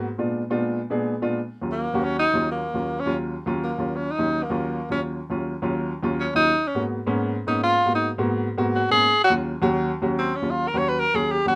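Jazz in Eb minor at 188 BPM, sultry and fiery, where a baby grand piano plays natural, up-front accompaniment from the start and a tenor saxophone enters at 1.7 seconds for a smooth-topped solo with vibrato and subtone, moving over Bb7b9, Ebm7 and Abm7 chords in light reverb, tuned to A4 = 445 Hz and cut from a longer piece.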